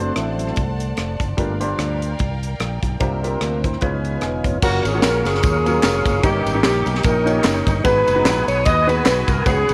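This hopeful, uplifting uptempo gospel excerpt opens with a tonewheel organ solo over concert grand piano, a lush bowed string section and fingered electric bass. The organ is clean and clear, turning through a slow rotary speaker with chorus vibrato, while the piano sounds intimate, with audible action noise and deep bass. At 0.2 seconds a crisp fusion drum kit comes in up front, with a high-tuned snare, punchy kick, hi-hat, ride, crash and rim clicks, swinging the eighth notes at 148 BPM in 4/4. The strings drop out at 4.6 seconds as the music settles into F# major, and a saxophone section takes the melody up front with light vibrato and a jazz-style ensemble blend. Tambourine, tube shaker and group handclaps join in the background, while the bass stays punchy and direct with transformer saturation. The chords move from D7/F# through Gm7, C7sus4 and Db7 to F#maj7, D#7/G and G#m7, all set in light studio reverb.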